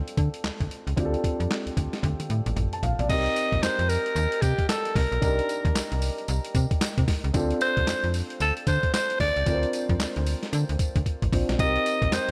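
A swung 16th-note groove at 113 BPM in 4/4 drives this slick, bouncy new jack swing R&B excerpt, built on a compressed, pitched-down boom bap sampler-style kit with a thumpy kick, medium-tuned snare, handclaps, hi-hat, tambourine, crash and toms, with drum fills at 2.0 and 11.1 seconds. A snappy FM bass with a metallic attack sits up front beside a dark, mellow concert grand piano moving between Dm7 and Cm7 in C dorian. At 3.1 seconds a raspy alto saxophone takes a punchy pop-style solo melody, with vibrato, scooped notes, a smooth top and a touch of delay, while light reverb and digital ambience surround the mix.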